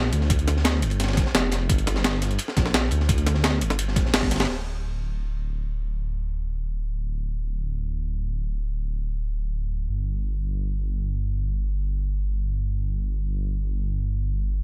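Melancholic and rolling, this liquid drum and bass excerpt in free time opens on a drop where a gritty, thumpy electronic kick and two layered breakbeat kits, one up front with a high-tuned snare and low-pass filtered hats, the other saturated and crunchy with dark cymbals and high-pass filtering, drive a drum fill and band accent before stopping at 4.5 seconds, leaving the deep, rumbling detuned saw bass, beating and sustained between D1 and D2, to carry on alone until 14.6 seconds in a dry sound.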